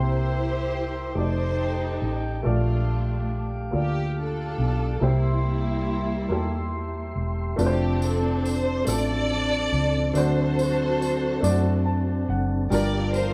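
A bowed studio string section carries the melody up front, its smooth top shaped by vibrato and portamento in an expressive, reverent line over this slow gospel piece in a straight 6/8. Beneath it, a hollow-body short-scale electric bass sits loudest in the mix, dark, round and punchy, while a woody upright piano with short sustain fills out the accompaniment and adds a polished fill from 11.4 to 12.7 seconds. A mellow, flute-like tonewheel organ holds clean sustained chords with a touch of key click, turning through a slow rotary speaker. The harmony moves through C7, F13 and Bbmaj7 before shifting to F6, D7 and Gm7 as the second section arrives at 7.6 seconds, where a close, jingly tambourine joins quietly. Played live together in one room with moderate reverb, this uplifting passage is cut from a longer performance.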